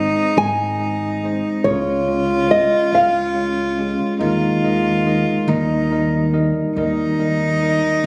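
Intimate and hopeful, this short cut from a slow acoustic folk-pop ballad moves at 47 BPM in a gentle 6/8, drifting from Ab to Db and then to Ebsus4 before resolving onto Eb. A thumb-plucked nylon-string guitar carries the melody up front from 0.4 to 5.9 seconds, set over a worn, slightly out-of-tune tine electric piano, a woody, thumpy pizzicato upright bass, and a nasal, floating bowed cello playing a second line with soft sul tasto tone and tape echo. Captured on a phone in the room with light studio reverb and compression, the sound feels close and personal.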